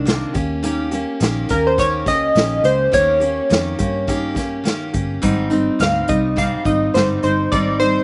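Hazy and lonely, this indie and bedroom pop excerpt moves with a light swing in 4/4, drifting from Eb7 to Abmaj7 over a slightly flat tuning. Up-front picked steel-string acoustic guitar with a gentle vibrato and a dark, foam-muted vintage electric bass open the excerpt, joined at 0.1 seconds by an unplugged drum kit played with bundle sticks, its punchy kick and medium-tuned snare sounding in a small room. At 1.5 seconds a glossy, detuned retro synth carries the melody with chorus, slapback echo and a filter sweep, all in a dry outdoor sound that rolls off the highest frequencies.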